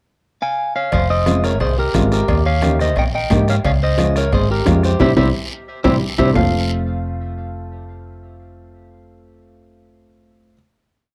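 Passionate and driving, this short cumbia at 177 BPM opens with a twangy, clean electric guitar hook, partly doubled in thirds and bathed in spring reverb, joined at 0.9 seconds by a round, dark hollow-body bass, a soft-beater bombo, very quiet low-tuned congas, ringing cowbell and timbales in the background and a raspy guiro, with a woody upright piano playing rhythmic triads from 1.3 seconds, until the percussion drops away after a band accent and drum fill that end at 6.4 seconds, leaving a final F chord in a dry, close 1970s-style studio sound.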